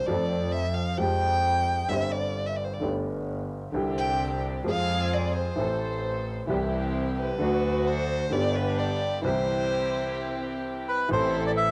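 Tango with a melancholic, sultry mood and a rubato feel, cut from a longer piece: a close, expressive bowed violin carries a solo line rich in vibrato and portamento over a smooth, vintage grand piano and a nasal, gut-string double bass. A distant chamber string section adds bowed stabs from 3.7 seconds, a break arrives at 9.2 seconds, and a dark, reedy bandoneon steps up front with the melody at 10.9 seconds. Cassette tape colours the violin, piano, strings and bandoneon, and the home recording sits in a moderate booth ambience.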